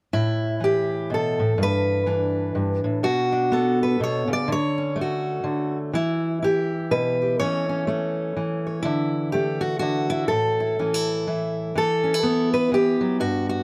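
Folk for solo fingerpicked steel-string acoustic guitar, hopeful and peaceful, moving at 124 BPM in a lightly swung 3/4 in A mixolydian. The guitar sits up front with a warm, auditorium-sized body and audible finger squeak, captured by close, detailed microphones in light reverb as it moves through chords such as Asus2, Bmadd9, Dmaj7 and A/E. This short passage, cut from a longer piece, turns to an Em chord at 11.8 seconds for its final stretch.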